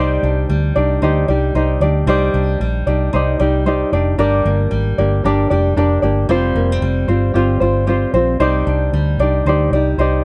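A tenor ukulele, flamenco guitar and muted electric bass all begin together at 0.0 seconds in this reflective, wistful pop piece in C minor, moving at 114 BPM in 4/4 with a light swing on the sixteenths. The thumb-plucked ukulele sits up front with a light, warm accompaniment in its middle register, while the fingerpicked flamenco guitar weaves arpeggios a little lower and further back in the mix. Beneath them, the vintage foam-muted bass is dark, round and punchy, amped and placed forward, anchoring the low end. The harmony moves from Cmadd9 to Gm at 4.2 seconds, then to Fsus2 and back to Cmadd9, giving the short passage a gently unresolved, longing quality. Close, detailed microphones and very little reverb keep the sound intimate and dry, and the piece is cut from a longer work, ending at 10.2 seconds.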